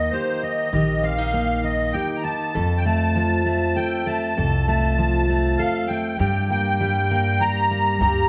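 A reedy, shimmering musette accordion takes the solo up front in this wistful, haunting acoustic folk fragment in three, carried by a full-bodied fingerpicked jumbo steel-string guitar and a woody, thumpy pizzicato upright bass through a move from Eb to F to Gm, the three parts playing together from 0.0 to 8.3 seconds within a moderate recital-hall reverb.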